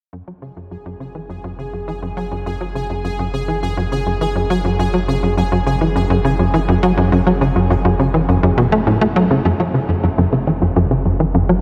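Ambient, sequencer-driven space music with a mysterious, cosmic mood, cut from a longer piece. A tight, punchy sequencer bass riff sits up front, its nasal sawtooth and square-wave tone shaped by a filter pluck, analog chorus and tape echo, while a deep, round sine sub bass holds a single low note beneath it. From 0.7 seconds a pulsing, tempo-synced texture of detuned triangle voices in unison adds a bright, chorused shimmer with its own reverb. The three synth parts fade in together over the opening stretch, moving from an F#sus2 chord to an F#5 at 9.5 seconds, where a filter sweep takes over the sequencer bass as the texture drops out. The whole mix is dreamy and soaked in a huge, long-tailed reverb.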